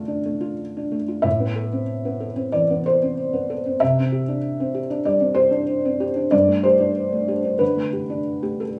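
Reflective and wistful, this neoclassical minimalist piano piece in A minor moves at 94 BPM in 4/4 with a rubato feel, cut from a longer work. A felt-muted upright piano plays solo throughout, its intimate, dark tone sitting up front with short sustain and audible action noise, moving through Dm, Amadd9, Csus2 and Gsus2. The sound carries small-room ambience and moderate studio reverb, as if captured live.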